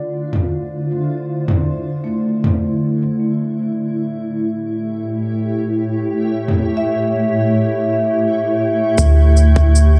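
A straight 4/4 pulse at 78 BPM carries this spacious, hazy ambient dub fragment in D minor, tuned to A4 = 441 Hz. Overdriven electronic toms and cabasa sit up front with a large-room character from 0.3 s onward. A granular cloud pad holds blurred, evolving sustained chords moving from Dm9 to A7, its bright unison texture bathed in its own built-in reverb and shaped by a filter sweep through the opening 9 seconds. Alongside it, a vibraphone played with soft mallets and the motor off traces mellow, dark arpeggios through a low-pass filter and dub echo. At 9.0 s the harmony settles on Dsus2 as a deep, round sub bass arrives up front on D2, joined by a tight, overdriven electronic kick drum set back in the mix. A light reverb lends the brief fragment a misty depth.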